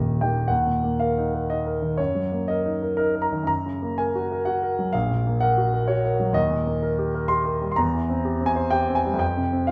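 Lyrical and warm, this brief excerpt of a romantic classical character piece for solo piano moves in a rubato 3/4 at 106-130 BPM, its concert grand sounding natural and up front with a deep bass across a span from Eb1 to C6, as harmonies drift from Eb minor through Gb before brightening into Eb major at 6.4 s, all set in a moderate large-studio reverb.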